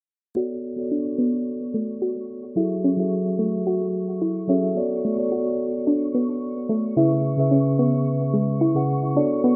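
A mellow tine electric piano with tape echo opens this wistful 109 BPM sunset chillout piece in B dorian, joined almost at once by a soft, round, dark pluck playing chorused arpeggios under a filter sweep and a barely audible overdriven electronic cabasa, while a twinkling granular texture with an octave-up shimmer enters at 2.2 s over Bm7, F#m7 and C#m7 chords, inside a moderate lush hall reverb and a rough, low-passed home demo mix.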